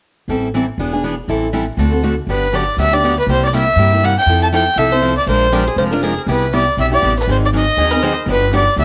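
Swinging and charming, this short cut of fast acoustic string swing in the jazz manouche style runs at 240 BPM in G major, with an up-front, bright picked steel-string guitar laying down the chords and a woody, thumpy pizzicato upright bass on gut strings anchoring the low end from the start, before a rich, nasal, earthy bowed fiddle takes the melody at 2.3 seconds and a boxy swing-style guitar adds a quieter second line with tape echo from 5.5 seconds, all in light small-room reverb over a colourful progression running from Am7 and E7 through Fmaj9, Bb9 and Ab7 back to Gmaj7.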